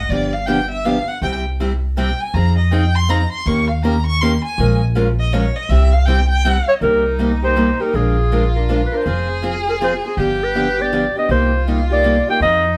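Swinging and virtuosic, this excerpt of acoustic string swing in 3/4 at 161 BPM opens with an expressive, distant bowed violin soloing with vibrato and portamento over woody pizzicato upright bass and a bright, boxy picked parlour guitar with audible finger squeak, until a mellow subtone clarinet with light vibrato and scooped notes takes the up-front melody at 6.7 seconds as the harmony settles into C minor, all heard as a live band in one room with moderate studio reverb.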